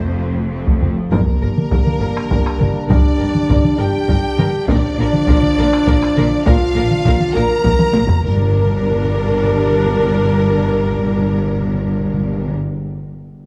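Cinematic, epic orchestral film score in G minor, moving at a slow 67 BPM in 6/8 with a dramatic mood, where a smooth violin section carries the melody over a lush second violin line, close violas, distant bowed cellos and focused bowed double basses, while a mellow French horn section and clear trombones hold sustained chords. Heavy-sticked taiko drums sit up front from 0.7 s, playing through a drum fill before giving way at 8.2 s to articulate, hard-mallet timpani on G as the harmony returns to G minor. The dark production is wrapped in moderate concert hall reverb, and this is cut from a longer piece.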